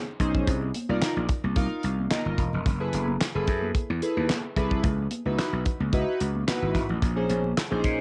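A straight 4/4 groove at 110 BPM drives this slick, danceable early-eighties boogie funk cut, opening with very quiet, high-tuned congas played with soft hands, quickly joined by a dry, damped 70s drum kit with a fat snare, tight kick, hi-hat and handclaps. Up front, a gritty slap bass growls with punchy overdrive, while a glossy, full-bodied chorused polysynth sustains evolving pulse-wave and sawtooth chords through Cm11, Gbm11, Dbm11 and Bbm11. The whole cut has a small-room, home-cassette character, with tape colouring the synth and drums.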